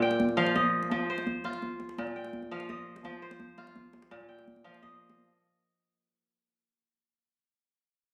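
West African traditional music in a flowing, hypnotic 12/8, this short fragment of a longer piece features an up-front, ringing, crisp fingerpicked kora playing arpeggios with a slapback echo, over a deep, close and dry djembe that enters at 0.1 s, all heard as a phone recording in a small room that fades out by 5.2 s.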